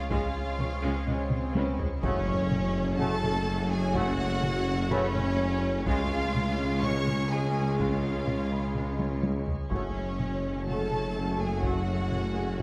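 Violin sections carry a smooth melody and a lush, distant second line over bowed violas, cellos and double basses, mellow French horns, clear trombones and a vintage tuba in this vast, futuristic hybrid orchestral and electronic film cue at 125 BPM in F# harmonic minor, where background taiko drums fill at 1.3 and 9.0 seconds, an electronic swell leads into an impact at 2.0 seconds, a nasal, ring-modulated organ-like drone with chorus sustains chords, a deep, punchy sub bass reinforces the low end, and a soft felt-muted upright piano adds intimate texture, all within a wet scoring-stage reverb.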